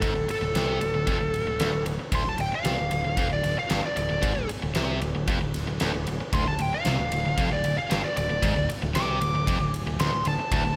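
Light reverb and a small-room ambience frame this menacing, driving hard rock excerpt in D minor at 114 BPM, cut from a longer piece. A smooth, dark overdriven lead guitar solos up front over a biting, bright guitar riff, a round, direct picked electric bass, and a huge arena drum kit with a fat snare, punchy kick, bright ride cymbal and pumping room sound. At 6.3 seconds, a crunchy, warm second riff guitar joins in the background, wet with spring reverb.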